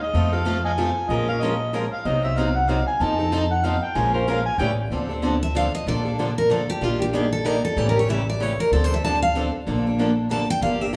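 A gritty, overdriven harmonica opens this virtuosic, swinging jazz manouche waltz with a scooped, tongue-slapping solo, carried by a full-bodied jumbo steel-string guitar, a boxy swing-style guitar in the background and a woody, thumpy gut-string upright bass, until the harmonica stops at 4.7 seconds and a bright parlour steel-string guitar with finger squeak takes the lead from 5.4 seconds, all in a live room with a large, wet studio reverb.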